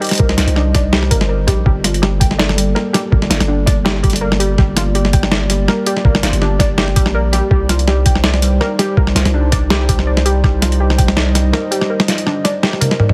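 Heavily compressed, radio-like digital ambience frames this dark, spacious half-time drum and bass excerpt at 164 BPM, where a gritty, pitched-down boom bap sampler-style kit with an up-front snare and a thumpy electronic kick (from 0.2 s) join a deep sine 808-style bass, while a detuned, moody analog pad with sampler grit and sidechain pumping holds Cmadd9 and Gmadd9 chords alongside a warbling, lo-fi pluck playing arpeggios through chorus and tape echo, before a drum fill at 12.8 s.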